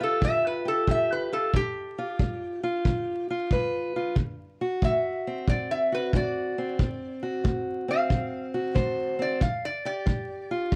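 Vinyl crackle and studio reverb surround this short excerpt of acoustic country blues, which has a swaggering, laid-back mood at 91 BPM in 4/4 with a 67% swing on the eighth notes in G mixolydian. Up front, a metal-body resonator guitar carries the melody with a slide and fingerpicks, and its metallic, nasal voice sings between G4 and F5 as the steel bar solo runs the full 10.8 seconds. Beneath it, a fingerpicked steel-string parlour guitar supplies a boxy accompaniment from G2 to C5, with finger squeaks audible on the strings. A tight, roomy kick drum with a rolled-off top enters at 0.2 seconds and keeps a small-room feel. The harmony moves from G7 to D7 and settles on a bare G7 chord near the end of this fragment of a longer piece.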